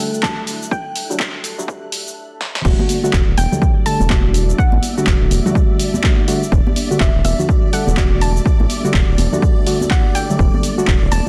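Deep house at 124 BPM in E minor with a moody, late-night feel, where a chorused, filter-swept deep chord stab with tape echo, a soft round pluck melody with 12-bit grit and analog delay, silky string machine chords, shimmering background violins and a very quiet dark ambient pad build over an up-front, tape-warm kick and a punchy analog drum machine with claps, hats, shaker and crash until a drum fill at 2.4 seconds drops at 2.6 seconds into a round sidechain-pumped analog bass and soft-handed congas, all in a dense, heavily limited modern mix.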